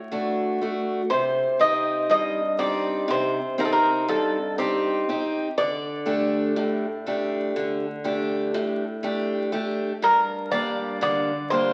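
Greek folk music from a bouzouki band, in a melancholic, dark 9/8, cut from a longer piece. The Greek bouzouki carries the melody up front with a metallic, double-strung tone and some octave-doubled strings, while a picked steel-string parlour guitar, boxy yet bright with fresh strings, accompanies up front alongside it. Both sit in a large, wet studio reverb with the crackle of a very old 78 rpm record, moving from D through C minor to a suspended D chord at 5.5 seconds before settling on G minor at 10.0 seconds.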